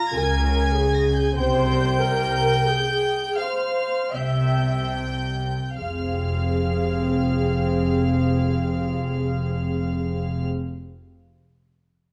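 Solemn and melancholic, this slow romantic movement for string orchestra is an excerpt cut from a longer piece, moving in a rubato 3/4 in F minor at 35-51 BPM and slowing down over its opening 5.8 seconds. High above the ensemble, a clear, pure first violin section carries the melody, with a distant second violin section tracing a rich second line beneath it, both played sul tasto with a floating quality. The dark, smooth-topped violas sit up front with a soft-attack accompaniment, while a close, warm cello section and a rich double bass section anchor the bass from 0.1 seconds. The harmony passes from Db to C before settling on F minor at 5.8 seconds, where the second section begins. A moderate recital hall reverb of 1.4 seconds surrounds the strings, and the production leans dark overall.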